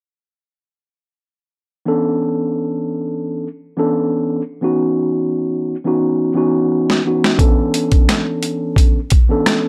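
Reflective and a little gritty, this boom-bap hip-hop excerpt moves with a light swing on the sixteenths. A mellow tine electric piano carries the accompaniment from 1.9 seconds, sitting up front with a clean tone colored by cassette tape saturation, filtering at both ends of its range and a plate reverb, as it moves between Bm11 and C#m11 chords before returning to Bm11. Around 6.7 seconds a drum fill ushers in a sampler-style kit that arrives at 6.9 seconds, compressed and pitched down, with a thumpy kick, a high-tuned snare, rim clicks and hi-hat placed prominently in the mix. The drums carry a gritty character that sets them apart from the warm, clean keys. A moderate studio reverb gives the whole a modest sense of space before the clip ends at 9.7 seconds.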